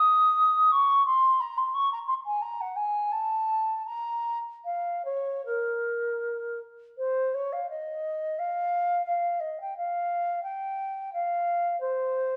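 This classical, baroque-style fantasia for unaccompanied flute is a grave, introspective excerpt in B-flat minor, moving freely in rubato at roughly 76-90 BPM in 4/4. The solo baroque flute has a pure, woody tone with vibrato and tongued notes, ranging from B-flat 4 up to E-flat 6 and sitting up front. A reverberant stone room surrounds it, and the opening idea returns at 7.0 seconds before the passage is cut off at 12.4 seconds.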